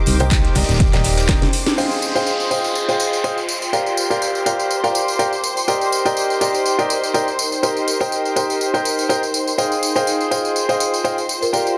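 Bittersweet and soulful, this piano house excerpt at 123 BPM in F dorian swings lightly around a bright, brilliant grand piano riff with digital delay, set up front over sidechain-pumped violin chords carrying 12-bit sampler grit and a warbling, nostalgic, chorused pad in the background. For the opening moments, a punchy overdriven electronic kick, a round FM bass, a mid-forward acoustic metal kit and close, dry tambourine and congas play alongside the overdriven house kit with its cracking snare and metallic hats, before a drum fill and band accent hand over to a downlifter at 1.8 seconds. The house kit carries on through the Ebmaj7, Fm9 and Gm7 changes under a plate-reverb sheen, and a woody, soft-mallet marimba note surfaces at 11.4 seconds in a dense, heavily limited master.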